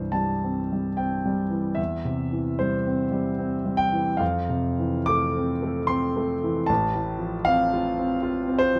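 A concert grand piano plays alone throughout this short excerpt of a romantic classical nocturne, its intimate, natural tone carrying deep bass, long sustain and audible action noise as it sits up front in a light reverb. Moving in a gently flowing triple metre with rubato, the serene, dreamy passage drifts from C harmony through an Fmaj7 chord at 4.2 seconds before settling on F over A.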